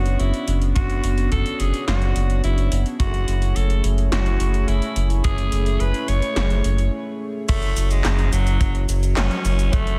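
Synthwave at 107 BPM in F# minor, this cinematic, driving cut from a longer piece moves in a straight 4/4 feel. A raspy, gritty alto saxophone carries the solo melody from the start, punchy and forceful with light vibrato, its line thrown back by slapback and tape echo. Beneath it, a chorused pulse-width pad holds shimmering, mellow sustained chords with a soft attack and sidechain pumping, moving from Bmadd9/F# to Amaj7/F#, while a round analog bass sits up front on a deep, dark F#. The 80s electronic pad drums bring a gated snare, metallic hi-hats, handclaps, cabasa and crash cymbal with a tape-tinged analog character, and a tight, polished acoustic kick enters at 0.8 seconds, set in the background. After a brief break at 6.9 seconds, a new section arrives at 7.5 seconds on F#m7, all within light reverb and small room ambience.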